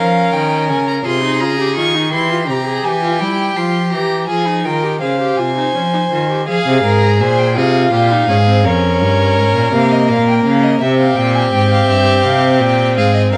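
Baroque-style classical fugue for string quartet in a slow 12/8 at 56 BPM to the dotted quarter, contemplative and solemn, where a warm, distant first violin sings the high melody with vibrato over a clear, close second violin line, a smooth, even viola accompaniment and a focused cello bass placed up front, all four bowed by single players throughout, as the harmony moves from a rootless Gm7b5 through C7 to settle into F minor at 6.5 s, captured by close, detailed microphones with light reverb in this brief cut from a longer piece.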